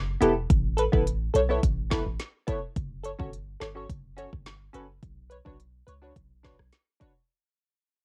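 A straight 4/4 dancehall groove at 106 BPM in B minor sets a sultry, hypnotic mood across this short fragment cut from a longer piece, which fades out from the start over its 7.3 seconds. An electronic afro-pop drum kit enters at 0.2 seconds with a deep kick, a woody snare, rim clicks and crisp hi-hats, all sitting up front. Beneath it, a boomy 808-style bass with a sine tone, a noise layer and a fast, decaying attack holds the low end from the very first moment until 6.7 seconds. A digital wavetable chord stab, built from detuned unison sine and triangle waves with a wave-folded edge and a filter pluck, carries the harmony through Em, Asus2, F#m and Bmadd9. The dry sound has the intimate character of a home cassette recording, with the bass, stab and drums all placed close to the listener.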